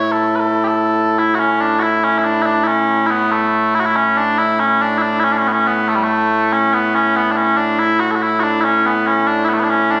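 A straight 6/8 lilt at 94 BPM carries this ceremonial, stirring piece of Scottish traditional pipe music in A major, cut from a longer performance. Mellow small bagpipes play solo and up front throughout the 10 seconds, their sweet, continuous tone ranging from A2 to C#5 and colored by vibrato. Captured on a phone in the room, the sound is bathed in a wet recital-hall reverb with a 1.7-second decay.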